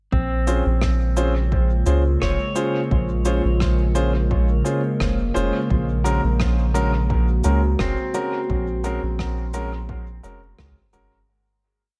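A round, up-front dub sub bass anchors this meditative, deep ambient dub piece at 86 BPM in Bb minor, alongside a bright, twangy pedal steel guitar whose slide arpeggios and volume swells form two slow loops of unequal length drifting against each other through dub echo, a woody upright piano placing off-beat chord stabs with audible action noise, a warbling, nostalgic tape-like pad holding dark, detuned chords that move from Bbm7 to Gbadd9 at 5.7 seconds, a soft, punchy electronic kick set in the background, and a sparse, echoing cabasa and rim click beat with a rolled-off top, all under light reverb and faint mains hum before a fade-out from 7.6 seconds to the end at 11.3 seconds.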